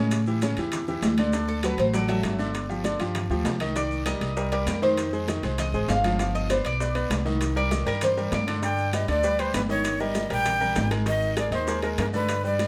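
This salsa excerpt, cut from a longer piece, drives along at a fiery 197 BPM in a straight 4/4. A Cuban tres takes the melody as soloist for the first 8.5 seconds, its picked double strings sounding metallic, with some courses doubled at the octave, over a harmony that moves from A7 and Dadd9 through Cm9, Fm9 and G7. Up front, a brilliant, polished baby grand piano with short sustain plays accompaniment while a dark, woody upright bass on gut strings thumps out pizzicato lines. Behind them sit high-tuned, thin-skinned congas struck with hard hands in a distant large room, round, low-tuned vintage bongos played with soft hands, ringing metal-shell timbales, a raspy guiro and grainy, mellow maracas. At 8.6 seconds a breathy metal jazz flute steps forward with the melody, its reedy tone, crisp chiff and vibrato riding over G, Eb/G and Abadd9 until the close at 12.7 seconds, the whole mix touched by light reverb.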